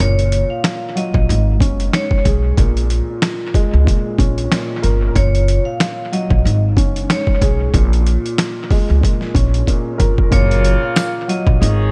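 A gritty, tough boom-bap excerpt opens on a break as an overdriven, pitched-down sampler kit with a thumpy kick, a woody pizzicato upright bass, a boxy, tape-worn dark grand piano and a bright, ringing hard-mallet vibraphone melody trailed by dub echo roll through a swung, echo-heavy mix, before a drum fill at 9.7 seconds gives way at 10.3 seconds to distant, tight jazz saxophone stabs and, at 11.0 seconds, a brief jingly tambourine in the background.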